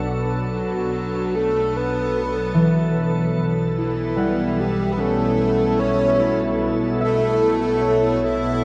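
Drenched in a vast, echoing cathedral reverb, this spacious, melancholic ambient fragment drifts at 74 BPM over a Bm9 chord that moves to A/B at 3.4 seconds. A warbly, nostalgic tape-like pad holds dark lo-fi chords up front while a ringing, thumb-plucked concert harp spins arpeggios through shimmer reverb and delay. A distant, earthy bowed double bass section and a very quiet organ-like drone sit beneath, and a glassy texture of drifting overtones fades out above. From 0.5 seconds, a breathy, flute-like synth lead carries the melody, softly vibrato-tinged with a touch of 12-bit sampler grit.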